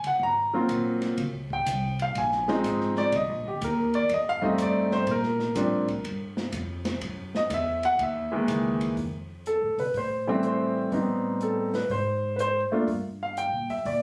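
Playful and warm, this swung jazz piano trio excerpt moves at 123 BPM in 4/4, with an up-front grand piano carrying the melody and taking a solo over rich chords such as Ab13 and Dbmaj9 for the first 9.0 seconds. A woody, growly pizzicato upright bass and a dark, smooth acoustic kit with boomy kick and dark cymbals support it throughout, and at 9.0 seconds the piece shifts into a new section over Fmaj7. The intimate piano, with its long sustain and audible action noise, sits in a moderate club-like reverb, heard as if captured on a phone in the room.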